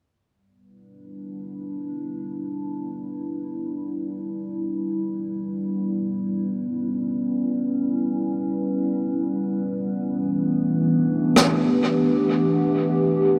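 Drenched in a huge, wet ambient reverb, this meditative, spacious ambient dub excerpt in free time and E dorian fades in on a warbly, nostalgic tape-like pad, detuned and lo-fi with chorus and phaser, holding sustained Em7 chords that shift to Gadd9/E at 10.1 s, before a single up-front acoustic rim click with a rolled-off top sounds at 11.4 s and trails off into dub echo.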